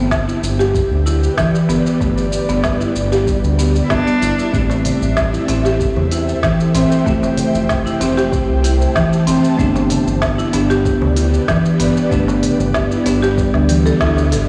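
This organic downtempo piece moves at a straight 95 BPM in 4/4, anchored by a soft, overdriven electronic kick and an electronic kit of woody snare, smooth hi-hat and shaker, with a clay-shelled darbuka joining in the background from 4.7 seconds. The mood is meditative, and the harmony drifts from Em7/G through Am7 and Fmaj7 back to Em7/G. A round, deep analog bass sits up front with tube saturation, while a buzzing marimba played with soft mallets spins woody arpeggios through tape echo and shimmer reverb. An ethereal, airy pad holds sustained chords, colored by ensemble chorus, tremolo and sidechain pumping. A rich, bowed cello offers a brief phrase with vibrato from 3.8 seconds, and a bell-like tine electric piano joins with accompaniment from 4.5 seconds, bright and clean with echo and pumping. The whole mix sits in a lush hall reverb with a blown-out, overdriven character, and the band lands an accent near 14.0 seconds before the cut.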